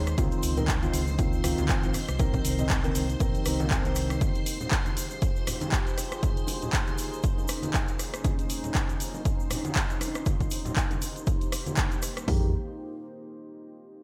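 A swung sixteenth-note groove at 119 BPM in 4/4 drives this hypnotic deep house excerpt in F minor, built on a punchy analog drum machine whose kick, hi-hat and toms sit up front, joined by a second machine adding handclaps, hi-hat and rim click, both re-recorded in a large room. A grainy egg shaker sits in the background, while very quiet congas and bongos, played with soft hands, ring from a distance. The harmony moves through Dbmaj9, Cm7, Fm9 and Eb7sus4, carried by a deep, moody sawtooth pad with a sub octave, slow attack, long release, chorus and built-in reverb, and above it a shimmering, vintage string machine of violins adds bright ensemble-chorused texture. A round, overdriven electric bass with tube saturation and felt-muted upright piano stabs, mellow and intimate with 12-bit sampler grit and delay, play only until about 4.2 seconds, then return briefly at 12.3 seconds. The pad, bass, strings and piano all breathe with sidechain pumping, and the mix stays dry.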